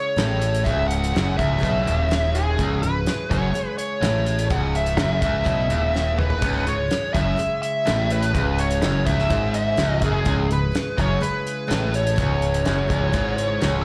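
A straight 4/4 groove drives this brooding, gritty classic rock excerpt, captured at a live club gig through the venue's PA with light reverb around it. The damped 70s drum kit sounds dry, with a fat snare, a tight kick, toms and dusky hi-hat and crash cymbals, and it breaks into a short fill at 5.9 seconds. Up front, a round, direct electric bass with overdrive anchors the low end, while two picked electric guitars, one crunchy and one distorted, sit in the background on a low riff, both bright and touched by slapback echo. A jumbo steel-string acoustic guitar adds full-bodied picked accompaniment from the start, also set back in the mix. Over the top, a dark, smooth lead guitar carries the melody from 0.0 seconds, colored by wah, overdrive, slapback echo and analog delay.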